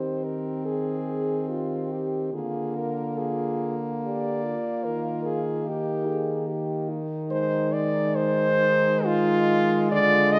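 A tender classical excerpt for horn quartet in a lyrical, rubato 3/4, where a warm, smooth-topped French horn carries the melody up front over a clear horn's accompaniment, a mellow horn with light vibrato singing the second line in the background, and a distant, roomy horn holding the bass, all blooming in a concert hall's 2.4-second reverb through chords moving from Ab/Eb to Fm7/Eb.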